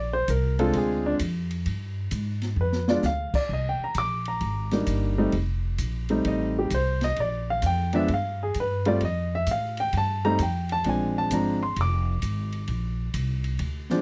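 Warm and relaxed, this excerpt of a jazz piano trio swings at 130 BPM in 4/4 in Bb mixolydian, with a natural-sounding baby grand piano taking a solo over the full 14 seconds, its short sustain sitting up front. A woody, plucked upright bass with steel strings sits close beside it, while an airy, polished drum kit with dark cymbals and a boomy kick joins at 0.3 seconds and adds a brief fill at 2.6 seconds. The dry, close studio sound has a 1970s character, and the changes move from Bb7 through G7b9, Cm7 and F7 before returning to Bb7 at 10.8 seconds.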